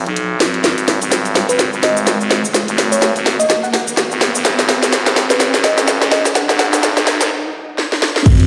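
Bass house build-up cut from a longer piece, bouncy and gritty with a swung feel, driven by a growling, thick FM bass with tube saturation and sidechain pumping beneath an electronic riser and sub drop. An up-front house drum kit with a cracking snare, hi-hat, shaker and crash plays fills through most of the passage, while a sparkling, bell-like FM electric piano with chorus and delay enters at 1.5 seconds and sits dark in the background. After a short break at 7.3 seconds, a punchy, tape-warm electronic kick lands the impact at 8.3 seconds, and the mix carries a lush hall reverb, as if played back on a big system in a bare room.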